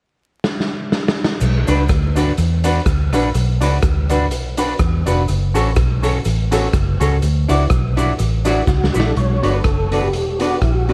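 Heard through a small room with vinyl crackle, this energetic, mischievous ska excerpt in B minor moves at 124 BPM with a light swing, opening on a drum fill from a raw garage kit that sounds punchy and dark under a dub echo. From 1.4 seconds a round, foam-muted electric bass sits up front beside a grainy cabasa in the background, and from 1.7 seconds a clean semi-hollow guitar with lush chorus and dub echo and a woody upright piano playing stabs carry the harmony through Bm, F#m and Dadd9. At 8.7 seconds a mellow tonewheel organ takes the melody, colored by chorus vibrato, a slow rotary speaker and dub echo.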